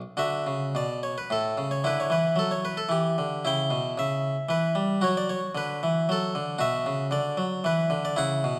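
A classical, baroque-style suite movement for solo harpsichord, this brief passage cut from a longer piece carries a serene, radiant mood in D major. It moves in 3/4 at 113 BPM with a rubato feel that lets the pulse breathe. The harpsichord plays alone from 0.2 to 8.6 seconds, ranging from A2 up to G5, its Flemish-style tone bright and plucked, heard through a single set of strings and placed up front with a mid-forward character. The harmony starts on D, passes through Em7/D and Em6/B, returns to D, and comes to rest on Bmadd11. A wet concert hall reverb with a 2.1-second decay surrounds the instrument, giving its bright, plucked tone a spacious, ringing afterglow.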